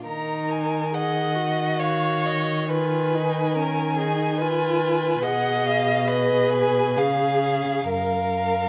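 Yearning and melancholic, this slow romantic string quartet movement at 69 BPM in 3/4 sways with rubato from E-flat minor toward F-sharp, with a focused first violin singing the high melody over a smooth, even second violin, a close, soft-attacked viola sliding expressively with portamento, and an up-front cello bass, each bowed by one player with rich vibrato in a moderately reverberant large studio.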